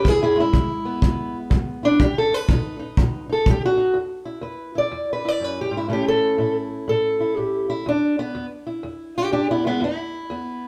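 Swaggering and soulful, this short cut from a longer acoustic country blues performance swings on a dark, boxy fingerpicked parlour steel-string guitar carrying the melody up front throughout, joined by a punchy, small-room kick drum with brushes only until 3.6 seconds, all heard live in one stone room with moderate reverb and a faint mains hum.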